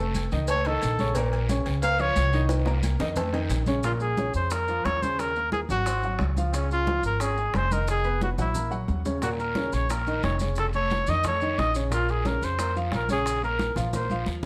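A mellow trumpet with light vibrato and scooped notes sits up front in this fiery, sultry Afro-Cuban jazz piece in Bb minor at 179 BPM, carried by a woody pizzicato upright bass and an intimate concert grand piano with audible action noise, while thick-skinned congas, round low-tuned cowbell and bongos and a raspy guiro that drops out at 3.8 seconds and returns at 9.2 seconds fill the background of a large studio room, joined by grainy maracas.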